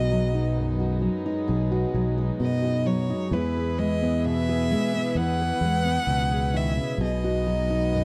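A dry, close, 1970s-style studio sound frames this intimate, heartfelt acoustic folk-pop ballad excerpt, where a rich, smooth solo violin carries the melody with vibrato and a touch of slapback echo over a fingerpicked steel-string acoustic guitar with fresh strings, a round, up-front fingered electric bass and a soft, distant chamber string section holding floating sustained chords as the harmony moves from B6 to E and back.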